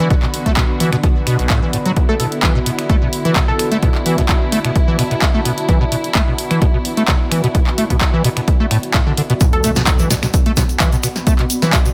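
Acid house at 129 BPM in B minor, this hypnotic, driving excerpt holds a single B minor chord throughout. A squelchy, resonant square-wave acid bass riff runs the whole way, its fast-attack filter pluck thickened by tube saturation, chorus, cassette tape colour and digital delay, all pumping against an up-front, tape-warm electronic kick. A punchy analog drum machine adds finger snaps, handclaps, hi-hat and snare, with a short room on the snare, claps and hats. Underneath, a distant, floating chamber string section holds soft bowed chords until 9.4 seconds, while a cloudy, wave-folded granular pad drifts in the background with its own built-in reverb. A crystalline wavetable pluck sings a brief A4 figure with chorus and delay around 2.1 seconds, and at the 9.4-second drop a grainy tube shaker and a very quiet electronic impact arrive as the strings fall away.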